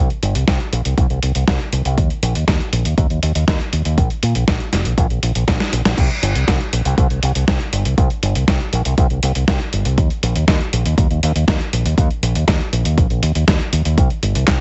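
Danceable and melodramatic, this italo disco excerpt in C minor moves at 120 BPM with a straight 4/4 pulse, led from the start by an up-front fingered electric bass whose envelope filter and tube saturation give it a bright, punchy edge. A gritty, overdriven sampler-style kit of crash, handclaps, hi-hat and a medium-tuned snare enters at 0.1 seconds, joined at 0.5 seconds by a layered electronic kick, both sitting in small room ambience, and a drum fill from 5.6 to 6.0 seconds ushers in a new section. The mix is dry and heavily compressed, with a radio-like sound that cuts off above 8 kHz.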